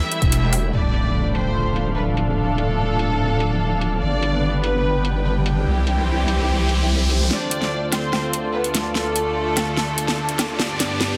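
Violins, a lush detuned sawtooth pad and a veiled, muted string section open this aggressive, menacing excerpt of heavy wobble dubstep at 146 BPM, felt in half-time in D dorian. The violin section carries the melody with focused vibrato, sounding distant and gritty through a vintage 12-bit sampler and delay, while the pad holds thick, warbling chords with chorus and the con sordino strings add a dark texture, both pumping against the sidechain. Up front, the electronic drum kit hits with a huge snare, metallic hats, crash and woodblock, all softened by low-pass filtering for a tape-toned edge. Background electronic effects add tension along the way, with an impact early on and a riser building toward the 7.3-second mark. The loudest part is the wobble bass, a saturated, resonant blend of square and sine waves with chorus and overdrive, which drops out at 7.3 seconds as the chords return to Dm. 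From there a drum fill drives a build-up, all set in a moderate hall reverb within a dense, heavily limited master.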